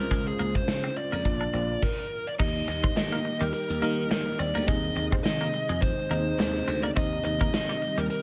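Over a lightly swung sixteenth-note groove in four, this romantic, glossy slice of 1980s-style pop sets a big rock drum kit with punchy kick, bright cymbals, tambourine and gated reverb under a growly glassy slap bass, a twangy chorus-and-tape-echo twelve-string electric guitar riff, a worn, slightly out-of-tune tine electric piano with tube saturation, a silky, warbling soft string machine and an up-front dark fuzz lead guitar melody, all halting in a brief stop at 1.8 seconds before the next section arrives at 2.4 seconds.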